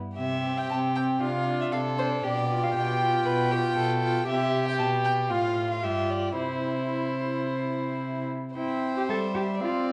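In a flexible, rubato 4/4 at 108-120 BPM, this lively, graceful excerpt from a quick classical-period string quartet movement in C major moves through chords such as Dm7/C, G7/B and F/A before settling on C. A period-style first violin with an airy bow carries the melody high in its range, while the second violin adds a rich, reedy second line and the cello, with a light vibrato, supplies the bass. The viola's nasal gut-string accompaniment joins at 0.4 seconds. The whole is heard through a wet recital-hall reverb and a worn old cassette tape with a warbly pitch drift.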